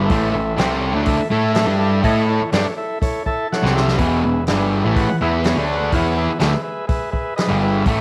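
This raw, rowdy garage rock excerpt is cut from a longer piece and moves in a straight 4/4 feel. A bright, distorted fuzz guitar drives the riff up front, double-tracked and compressed so it sits as the loudest voice. Beneath it, a growling picked electric bass with overdrive adds a gritty, direct-and-amped edge. A vintage acoustic drum kit with a fat snare, punchy kick, hi-hat and a rolled-off top supplies the beat. A mellow, clean combo organ holds sustained chords. The organ plays a fill at 3.0 s, a drum fill follows at 3.5 s, and the harmony shifts from A5 to E at 4.0 s, all set in a moderate studio plate reverb.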